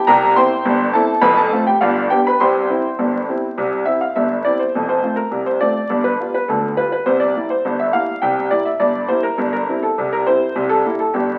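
A straight two-beat pulse drives this jaunty, cheerful ragtime fragment, cut from a longer piece. A solo upright piano carries everything from 0.0 to 11.4 seconds, ranging from deep bass notes to bright upper tones, and it sits up front with a clear, woody voice that sounds worn and slightly detuned. The harmony moves through simple changes such as C7, F, G7 and C, with a fresh passage beginning at 4.7 seconds that returns to F and closes on C over G. A large studio reverb gives the playing a wet, roomy sound. Vinyl crackle from a very old 78 rpm record lends the whole track a vintage, dusty character.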